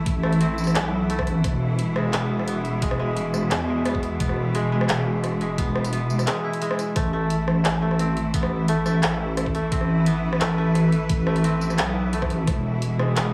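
A lightly reverberant studio sound frames this spacious, cinematic half-time drum and bass passage at 174 BPM, cut from a longer piece: a deep, dark, up-front wobble bass with chorus anchors the Am and E chords beneath a bright, lush, distant cello section holding sustained chords with sidechain pumping. A woody, fingerpicked koto plays arpeggios through vintage 12-bit sampler grit and tape echo, while a layered electronic kick with a knocking tone and a drum kit of handclaps, rim click, tambourine and hi-hats, both re-recorded in a small room, come in at 0.1 seconds.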